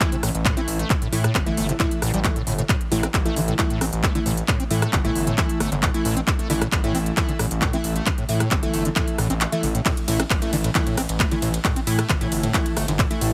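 A squelchy, resonant acid riff screams through distortion and analog chorus, pumping against the beat, while crisp, detuned wavetable chord stabs decay into dub echo in this dark, relentless slice of driving peak-time techno. A gritty, saturated synth bass enters at 0.2 seconds, and a punchy layered kick anchors the groove until it drops out briefly at 9.4 seconds, returning at 9.9. Up-front handclaps, smooth pumping hi-hats, ride cymbal and rim clicks fill out the drums, all pressed into a dry, heavily compressed radio-style sound.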